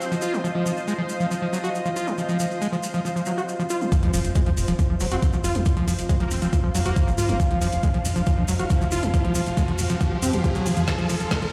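A straight psychedelic trance pulse takes hold at 3.9 seconds, when an overdriven, knocking kick and a garage kit with a woody snare and metallic hats join the grainy maracas and the squelchy, gritty acid bass riff, sweeping drone and blurred granular cloud pad that pump together from the outset. A punchy, plucky analog bass follows, while a bright, aggressive wobble bass surfaces in the background for a moment and an electronic riser enters at 7.1 seconds, feeding an intense build-up with a filter sweep and a drum fill at 10.9 seconds. The whole mix sounds as though played on a big system in a bare stone room, wrapped in a lush hall reverb.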